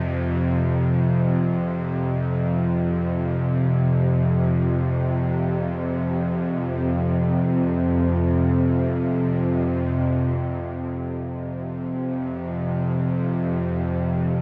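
This ambient fragment in free time, tuned to A4 = 436 Hz, feels dark and unsettling, built entirely from a single up-front bowed-like drone that holds an F5 chord low in the range from F2 to C3. The drone's string-like, detuned sawtooth tone carries a noise layer and vibrato, with slow attacks, long sustains and a long release, all treated with its own reverb and delay. A lush hall reverb with a 3.1-second decay soaks the dreamy mix, and the piece moves into a new section at 10.1 seconds before the cut at 14.4 seconds.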